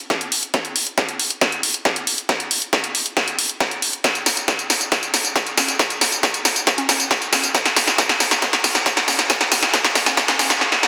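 Uplifting trance with a driving, euphoric feel, this short excerpt is a straight 4/4 build-up carried entirely by drums: a layered, filtered electronic kick runs to 10.3 seconds beneath an up-front analog drum machine whose punchy snare sits alongside congas, hi-hat and tambourine that pump with sidechain, all placed in a large, reverberant room and pressed into a dense, heavily limited modern master.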